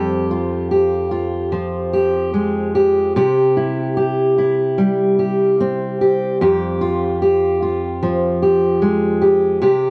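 A fingerpicked steel-string acoustic guitar carries this short excerpt by itself for the full 9.9 seconds, in a cut from a longer pop song. The mood is emotional and heartbroken, moving in an unhurried, straight four-beat pulse. The guitar rings with fresh strings and a full-bodied, auditorium-sized tone, sitting up front in the sound and ranging from F2 to G4. Its harmony rests on an Fmadd9 chord, shifts to C at 3.2 seconds, and returns to Fmadd9 at 6.4 seconds. Cassette tape coloring and an analog delay give the guitar a worn, intimate character, while light reverb and the home cassette recording keep the overall sound close and personal.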